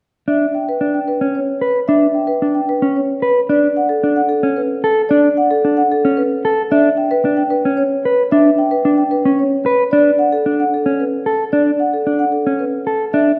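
A clean, fingered electric guitar plays up-front arpeggios throughout this meditative yet urgent section of minimalist classical pattern music at 112 BPM in 3/4, with a round, soft-mallet marimba carrying the melody in E dorian over rootless Em7 and Bm9/C# chords, all tuned to A4 = 438 Hz and set in a dark production with a wet recital-hall reverb.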